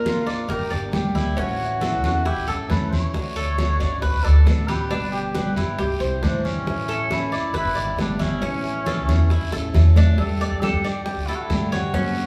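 A woody, thumpy upright bass sits up front in this relaxed, sunny slice of Cuban son and guajira, its dark pizzicato tone on steel strings anchoring a straight 4/4 groove at 136 BPM. Over it, a cup-muted trumpet carries the solo melody in a veiled, vintage jazz style, with vibrato and scooped notes. The Cuban tres adds mellow, metallic arpeggios on its double strings, some doubled at the octave, while a picked steel-string acoustic guitar with an auditorium body fills in the accompaniment. Round, low-tuned bongos sit close and very quiet, bright congas with a thin, damped skin stay in the background, and a raspy guiro scrapes along, the congas and guiro both compressed and saturated. The band plays live in one room under a lush large-studio reverb as the chords move from Gm through A, D, G and C, and a percussion fill from 9.5 to 10.2 seconds leads into a new section that opens on Gsus2 at 10.2 seconds.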